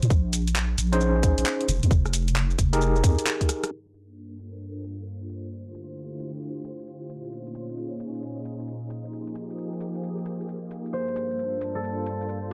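A deep, dark wobble bass with chorus and sidechain pumping opens this moody, skippy two-step UK garage excerpt at 133 BPM in G minor, its sound sitting up front beside a tight electronic kick. A garage kit of handclaps, rim click, shaker and bright hats rides a swung 16th-note feel throughout. Gritty, overdriven tine electric piano stabs with fast tremolo and tape echo pass through a filter sweep over minor eleventh chords, and a drum fill at 3.5 seconds marks the change as the bass, kick and piano fall away. From 4.1 seconds a silky vintage string machine holds soft, slow-blooming chords under ensemble chorus, sidechain pumping and its own filter sweep. A mellow, ringing concert harp melody with digital delay enters at 10.9 seconds, and the whole mix is dry and low-pass filtered.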